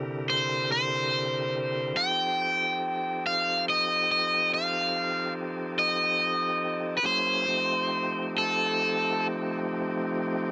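A bright, cranked, picked electric guitar lead sits up front in this swaggering, rollicking slow blues fragment at 47 BPM in 12/8, tuned to A4 = 435 Hz, playing melody until 9.3 seconds over thick, gritty overdriven tonewheel organ chords that turn through a slow rotary speaker from C7 to F7 and carry on to 10.5 seconds, all captured in a dry, close 1970s-style studio sound.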